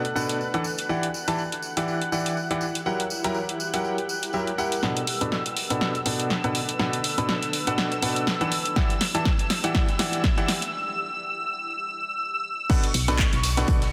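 Piano house at 122 BPM in B minor, bittersweet and energetic, built on a bright, brilliant grand piano riff with audible action noise, sidechain pumping, delay and a low-pass filter that sweeps through a build-up from 4.8 s, over a silky chorused string pad, a blurred granular cloud pad in the background and a punchy, tape-warm analog drum machine with crash, handclaps, hi-hat and a soft-clipped snare. Tambourine adds acoustic, vintage colour, and an up-front layered electronic kick joins at 8.8 s before a drum fill gives way to a break with the chords dropping out. At the drop at 12.7 s a gritty, very quiet garage kit arrives, and a round, dark FM bass on B1 follows at 12.9 s, all soaked in a lush hall reverb and a dense, heavily limited master, in this fragment from a longer piece.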